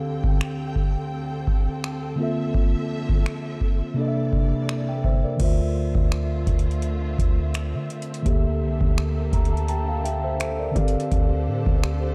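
A contemporary R&B groove at 84 BPM in 4/4, with a light sixteenth-note swing from a booming analog drum machine whose deep kick, metallic hi-hat, finger snaps and crash cymbal sit up front. A mellow, clean tine electric piano carries the chords in D minor beside a distant, lush bowed string section, and at 5.4 seconds a deep, boomy 808-style bass with a sine tone and a fast attack enters. The piano adds a fill from 9.0 seconds in this late-night, sensual excerpt, which has a dark, warm production and little reverb.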